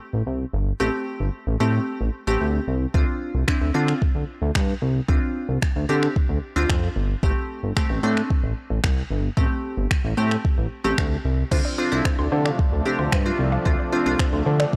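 Driving and confident, this dance-pop excerpt moves at 112 BPM in D minor, opening with a glassy, crystalline wavetable pluck and a chorused synth bass, both pumping against the sidechain, before a smooth R&B drum kit of soft kick, finger snaps and crash cymbal enters at 2.9 seconds with tape-warm, softly clipped snare. At 11.5 seconds a lush, warbling unison pad arrives with sustained chords, joined by a hollow, bouncy square pluck playing arpeggios in the background through phaser and dub echo. The whole mix sits in a digital ambience with a blown-out, overdriven character, cycling through Am7 and Dm7.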